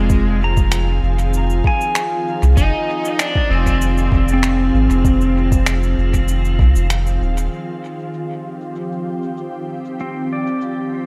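Ambient dub at 97 BPM in 4/4 with a straight feel, set in F dorian and carrying a deep, hazy mood through a short cut from a longer piece. A round, up-front sub bass anchors the low end until 7.5 s, joined by a soft, overdriven electronic kick and an electronic shaker with finger snaps, both sounding re-recorded in a small room, the shaker and snaps muffled by filtering and trailed by dub echo. Above them, an overdriven slide guitar sings a short melody through dub echo until 6.9 s, while a clean, fingerpicked pedal steel guitar spins filtered arpeggios with volume swells and its own echoes. A pure, calm organ-like pad holds sustained chords throughout, its detuned unison thickened by ensemble chorus and a moving notch. The harmony rests on Fm7 before shifting to F7sus2 at 7.5 s, where the pad, pedal steel and percussion linger on into the misty digital ambience.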